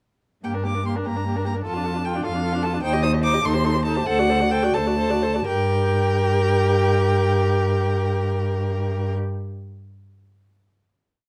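A dark, warm production with light reverb frames this brief, complete piece, a quick classical-period movement for string quartet in G minor, set in a rubato 6/8 at roughly 80 to 102 beats per minute on the dotted quarter, with a stormy, dramatic mood. All four bowed players sound together from 0.4 s, the first violin sitting close with a clear, smooth, vibrato-laden melody high in its range. Beneath it the second violin, viola and cello share a rich tone, the two middle voices both playing a rocking two-note figure and sustained chords, the viola adding expressive portamento. The cello sits up front, placing soft-edged bass notes on the beats and gliding with portamento of its own. The harmony moves from G minor through D minor over F, C minor over E-flat and D7 as the tempo slows from 2.3 s, arriving at a held G minor chord at 5.5 s that rings to the close.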